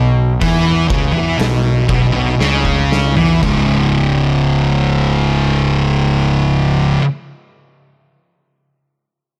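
A thick, double-tracked fuzz guitar sits up front with a heavy, ominous stoner and doom metal riff, moving from B5 to C#5 over a round, overdriven fingered bass, while an oversized low-tuned kit with a punchy kick and dark cymbals slows down and throws in a fill before dropping out at 3.7 seconds, all in a studio reverb, in this excerpt cut from a longer piece.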